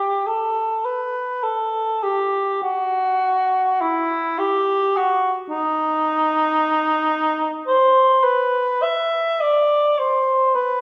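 Meditative and lonely, this short classical passage for unaccompanied cor anglais moves with a free, expressive rubato at roughly 50-58 BPM in 4/4. The solo instrument plays alone from 0.0 to 10.8 seconds, singing through a range of D#4 to E5 with a dark tone and light vibrato. Though the cor anglais sits up front as the only voice, it also sounds distant, heard from further back in a recital hall whose wet reverb, with an RT60 of 1.4 seconds, gives the line a roomy glow. Tuned to A4 = 442 Hz, the fragment is cut from a longer piece and leaves the unhurried melody hanging in the space.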